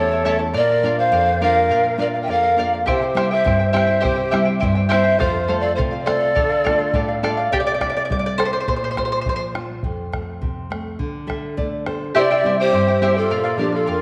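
Andean folk in a melancholic, earthy mood, this excerpt moves at 103 BPM in 2/4, with a breathy, hollow pan flute carrying the melody over an airy, end-blown large quena on the second line, both sitting distant in a wet echo-chamber reverb. A bright, shimmering charango with double strings sits up front beside a full-bodied, fingerpicked nylon-string guitar, while a dark, dry bombo enters at 2.9 seconds. The flutes drop out as the charango takes a solo from 7.5 seconds, the guitar adds a fill near its end, and the winds return at 12.2 seconds.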